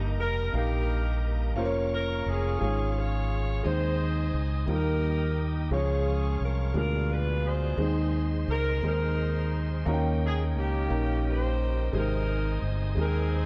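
An uplifting, reverent gospel passage in a straight 6/8 opens with all four parts together: a clear, tight saxophone section carries the melody with light vibrato from a roomy, distant spot, over woody upright piano with long sustain. A reedy tonewheel organ holds bright, lightly overdriven chords with key click and a slow rotary speaker, while a round, direct fingered electric bass sits up front. Light reverb and a dark, warm production frame the excerpt, which moves through a diminished chord at 6.8 s and a dominant seventh at 9.9 s before settling home on its resolution at 11.9 s.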